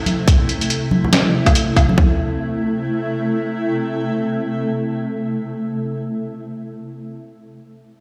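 Drenched in a cavernous stone-room reverb as if blasted through a big sound system, this meditative deep dubstep fragment at 141 BPM in A minor, half-time with a swung 16th feel, rests on a cloudy, evolving granular pad holding an Am chord up front until 6.1 s, while for roughly the first two seconds an overdriven electronic garage kit with a tight kick and toms and a muffled, pitched-down sampler-style kit of hi-hat, snare and woodblock sit forward, and bright, soft-handed congas with dub echo murmur in the background.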